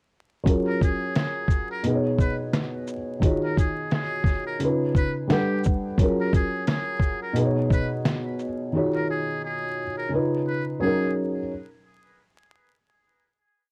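Worn, warbling cassette tape colours this short lo-fi hip hop piece, with vinyl crackle, warbly pitch drift and light reverb over the mix. At 87 BPM in 4/4 with a 55% swing on the sixteenths, it sits in F# major and feels mellow and dreamy. A felt-muted upright piano, up front and dark with audible action noise, carries the accompaniment in spread voicings with grace notes and a push chord rhythm, repeated like a sampled loop through its own low-pass filter and tape colouring. The sampler-style drum kit is compressed, pitched down and muffled, with a thumpy kick, fat snare, shaker and a sparse beat of quarter-note hats, playing from 0.5 to 8.6 seconds. Lower in the mix, a trumpet with metal mute plays a short looping jazz solo, buzzy and thin with a soft attack, also low-pass filtered. The chords move from F#maj7 through B6, D#m11, C#9 and a passing Gmaj7 before the cycle returns and settles on F#69 at 10.8 seconds.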